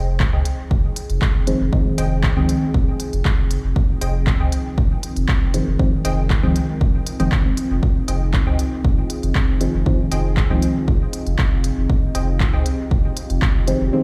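Hypnotic and nocturnal, this excerpt of dub techno moves at 118 BPM in F minor, resting on a single Fm7 chord as a punchy analog kick sits up front beside a round sine sub bass and a layered deep house kit whose smooth hats and handclaps trail dub echo. A moody, detuned sawtooth pad holds sustained chords with chorus and its own reverb, while a soft, nasal chord stab enters at 1.5 seconds, colored by phaser, cassette tape and dub echo. Above it a crisp, bright wavetable stab plays a riff through phaser and echo until 12.7 seconds, with pad, bass and both stabs pumping to the sidechain in a large, reverberant room.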